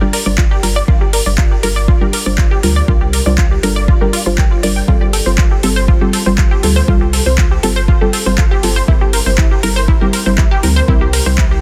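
A layered electronic kick drum anchors this dreamy, emotional progressive house excerpt alongside a thick, saturated sub bass and a soft, warbling vintage chord stab with chorus and delay that moves from Gm7 to Fadd9/G at 4.9 seconds and C7/G at 8.9 seconds, while a lush, detuned sawtooth unison pluck plays delayed arpeggios over an overdriven deep house kit of handclaps and metallic hi-hats, with sidechain pumping on the bass, stab and pluck in a dry, dense, heavily limited mix.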